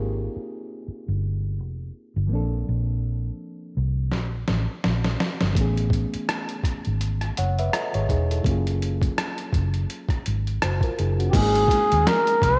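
A breathy, whispered flugelhorn steps up front at 11.3 s with a mellow, intimate jazz-style solo in this sensual, relaxed neo-soul R&B excerpt, joined by very quiet, ringing high-tuned congas. Before it, a dark, round, foam-muted electric bass with tube saturation sits up front beneath a reedy, worn and slightly out-of-tune electric piano played through its built-in speakers with light overdrive, over lush major-ninth harmony. A gritty, compressed, pitched-down boom bap kit with a thumpy kick and medium-tuned snare arrives at 4.1 s with a drum fill, and a light digital reverb surrounds the 16th-note swing.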